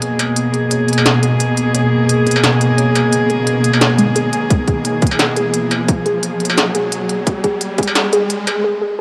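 Half-time drum and bass with a tense, cinematic mood, this build-up cut from a longer piece opens on a dark chamber cello section holding sustained, softly bowed chords up close, pumped by sidechain and shaded by a low-pass filter. Alongside it sits an up-front industrial drum kit of clanging snare, crisp hats and struck metal, while a warbling, lo-fi pluck with detuned sub-octave tones plays chorused arpeggios with dub echo in the background. An electronic riser enters at 3.4 seconds and a hard-clipped electronic kick punches in at 4.5 seconds, all within a dusky, high-passed production dressed in light reverb and digital ambience.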